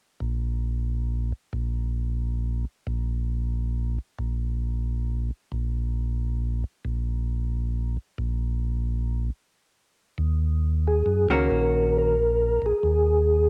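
A swung 4/4 groove at 90 BPM sets this smoky, late-night soul jazz organ trio excerpt in Eb minor, where a round, dark tonewheel organ bass on slow rotary speaker carries the line from 0.2 seconds with a hint of key click, a stop falls at 8.9 seconds, and then over an Ebm7 a soft, flute-like percussive organ melody with chorus vibrato enters up front at 10.9 seconds, joined briefly by a picked, compressed hollow-body electric guitar at 11.3 seconds, all in light digital reverb.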